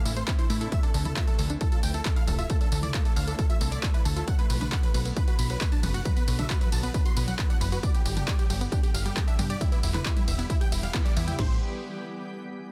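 A heavy kick and cracking snare from an up-front techno drum kit drive this euphoric, emotional uplifting trance drop at 135 BPM in A minor, alongside a tape-toned analog drum machine whose handclaps, hi-hat, ride cymbal, tambourine and toms pump with sidechain compression. A huge, bright, detuned supersaw lead with delay carries the melody over a punchy, funky plucked analog bass and a mellow arpeggiated sequenced synth with chorus and phaser tucked in the background, all three pumping as the chords move through Am, Dmadd9, Bm, G and Em. The dry, dense, heavily limited mix lands a band accent at 10.9 seconds before settling back on Am at 11.4 seconds.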